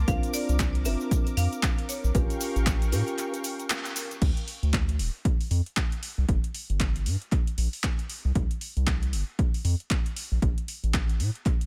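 Set in a small room with a tape-warm sheen, this moody deep house cut runs at 116 BPM with a swung 16th feel, as a punchy electronic kick and a round, nasal analog bass sit up front, the bass pumping beneath a layered drum kit of metallic hats, handclaps and crash. A detuned sawtooth pad with chorus, soft felt-muted upright piano stabs with audible action noise and delay, a bright, woody hard-mallet marimba melody roughened by 12-bit sampler grit, and a grainy cabasa in the background play over the chords as they move from C9sus4 to A7b9b13. A break at 3.2 seconds leads to a band accent at 3.7 seconds, and from 4.2 seconds only the bass, kick and kit remain.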